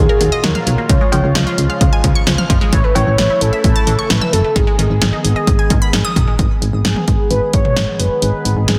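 A punchy analog drum machine sits up front in this nocturnal, driving synth-pop excerpt, its tape-tinged kick and snare joined by hi-hat, cowbell and toms from 0.2 seconds at a straight 131 BPM in 4/4. Beneath it, a solid FM bass gives round, mellow notes with a fast attack and natural decay, while a chorused pulse-width pad shimmers and warbles in the background with slow-blooming, sustained chords. A velvety lead carries the melody from G#4 to C#5, smooth and sustained with vibrato, chorus and delay. A squelchy, resonant blip pluck spins bright arpeggios through phaser and delay until it drops out at 6.4 seconds, where the music moves into a new section. In G# dorian, the harmony moves from D#madd9 through C# and A to G#m, all set in light digital ambience and a dense, heavily limited modern master.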